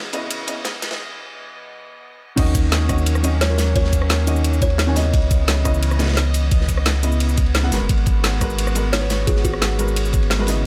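Reedy, gut-toned chamber strings hang in the background over a round, warm sine sub bass as this melancholic, dreamy liquid drum and bass excerpt in C# dorian at 174 BPM rises through a filter-swept build-up, where a mellow felt-muted upright piano, a gritty breakbeat kit with dark cymbals, and an overdriven kit of woody snare, bright hats, cabasa, rim click and crash all sit under a brief break before an overdriven knocking kick lands the drop at 2.4 seconds, with a ringing, boxy kalimba adding delayed phrases from 3.4 seconds across chords moving from C#m9 through D#m7 and back to C#m9 before settling on G#m9.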